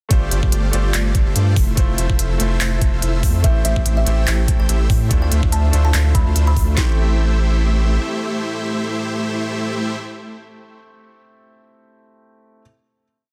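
A bittersweet, lush future bass drop in A minor at 144 BPM with a swung half-time feel opens on a trap kit's knocking kick, sharp snare and handclaps up front, crisp rolling hi-hats, a deep saturated sub bass pumping with the chords, a huge detuned supersaw riff of gated chords with delay, and a clear, intimate grand piano with audible action noise holding pushed chords, while a breathy, very quiet pad with chorus and phaser soon drifts in beneath, a woody kalimba joins at 3.4 s with a repeating tape-echoed riff in the background, the drums drop away as the Am7 final chord arrives at 6.8 s, and the piano rings on alone until 12.6 s.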